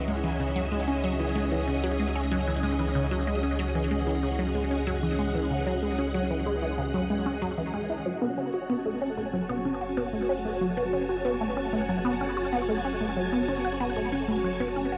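A small, wet room and the soft grain of home cassette frame this cosmic, expansive slice of sequencer-driven space music, cut from a longer piece and moving in a straight 4/4. Up front, a juicy, squelchy blip pluck carries the riff through a phaser and tape echo, while a lush vintage string machine holds sustained chords with ensemble chorus above a deep, round sine sub bass. A very quiet, pulsing gated texture shimmers in a high register until 8.1 seconds, where the harmony shifts from C#m to F#m.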